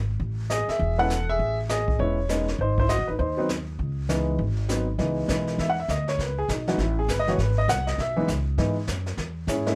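A swung 4/4 groove drives this moody, cool jazz piano trio excerpt, with a woody, thumpy pizzicato upright bass sitting up front from the opening and a distant, roomy brush kit joining at 0.2 seconds with a medium-tuned snare, a boomy kick and a rolled-off top. An intimate baby grand piano enters at 0.5 seconds with a natural, long-sustaining tone and audible action noise, carrying the melody over changes such as Amaj7, G#7 and C#m7 before taking a solo from 5.0 seconds. The sound is close and dry, with little reverb.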